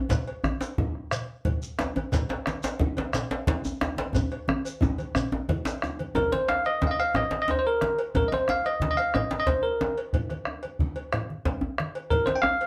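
A bright, bell-like tine electric piano stands out once it enters at 6.2 s, carrying a clean, up-front melody between Bb4 and G5 with a touch of plate reverb over a festive, powerful West African drum ensemble. Beneath it, the ensemble drives a 12/8 groove at around 120 BPM in dotted quarters, and the tempo gradually speeds up over the course of this cut from a longer piece. A deep, compressed, saturated djembe sits at the front, while a second, medium-tuned djembe plays further back. Low-tuned, ringing congas, a round bombo and a metallic, band-limited cowbell fill out the drums. A grainy, mellow shekere plays through the opening half until 5.9 s, and a drum fill from 4.1 s leads into the second section. The whole ensemble sounds as if heard from further back in a reverberant room.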